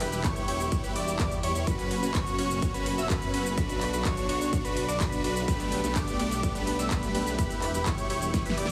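A festival progressive house passage in B minor at 126 BPM opens with strings, lead, supersaw chords and bass pulsing together under sidechain pumping: huge, lush supersaw chords play an up-front riff through tape echo, while a thick, bold unison lead spins high arpeggios coloured by cassette tape and tape echo. Beneath them, a detuned saw bass with chorus gives a thick, mellow low end, and a rich studio string section holds smooth, bowed chords in the background. The big-room dance drum kit brings a huge snare, crisp hats, handclaps, ride cymbal and shaker, joined at 0.2 seconds by a punchy, layered electronic kick that sits up front. The harmony moves from Em through F#sus4 and Bm to Gadd9/B before returning to Em, giving the passage an emotional, powerful lift. A drum fill from 8.3 seconds closes this cut from a longer piece, all set in light reverb and digital ambience with a heavily compressed, radio-like sound.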